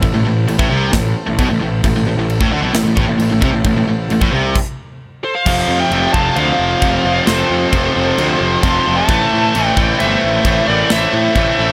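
A straight 4/4 pulse at 132 BPM drives this relentless, heavy metal passage in A minor, tuned to A4 = 445 Hz, with a tight metal drum kit of china, crash, kick and snare beneath an overdriven guitar riff, a second distorted riff guitar set in the background, and a growly, up-front fuzz bass, while a very quiet full pipe organ holds majestic baroque chords with a touch of chiff. Two high-gain lead guitars enter at 5.2 seconds: a bright melody with delay and a warm second line set in the background. A stop at 4.6 seconds gives way to half time from 5.5 seconds over F before returning to Am, all in a dry, close sound, though the polished drums carry an airy big-room character.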